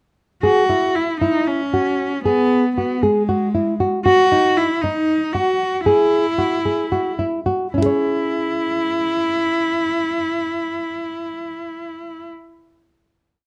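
Restless and pensive, this short, complete piece of contemporary chamber music moves in an uneven 7/8 metre at 230 BPM counted in eighths, with a straight feel, in C# minor tuned to A4 = 443 Hz. A nylon-string guitar sits up front with a dark, full-bodied classical tone, its thumb-plucked arpeggios forming an ostinato beneath a solo bowed cello. The cello, close and equally forward, carries a motif-based melody built in sentence-like phrases, sung with vibrato, portamento and a soft attack. Both instruments enter together at 0.4 seconds, and the harmony passes from E through D#m to Eadd9 while the tempo slows from 4.1 seconds. At 7.7 seconds the music settles onto a closing C#m chord that lasts until 11.5 seconds, and the guitar stops at 12.4 seconds. Light reverb and a dusky, warm production give the pair an intimate glow.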